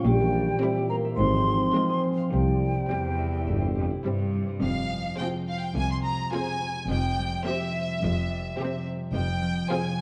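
An excerpt from a playful, whimsical film cue in F minor at 106 BPM opens with a background marimba melody, mellow French horn chords, ringing harp arpeggios, a clear cello section and rich double basses, joined almost at once by a hollow, close-miked flute line and a mellow tuba that together fall away by 4.0 seconds. From 0.6 seconds a rich, vibrato-laden chamber violin section carries the melody over a second violin line and a focused viola accompaniment, and the strings and harp continue through the second section, which begins on F minor at 4.6 seconds. The magical, quirky mood sits in a dark production with a wet scoring-stage reverb.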